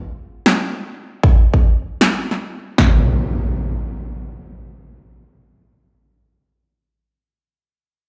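A punchy big-room dance drum kit of kick and snare lands up front at 1.2 seconds, stacked on a layered electronic snare drum that enters at 0.5 seconds, before a forward electronic impact takes over at 2.8 seconds in this bright, lush future bass fragment in free time, cut from a longer piece and heard through a hall reverb as if played on a big sound system in a bare room.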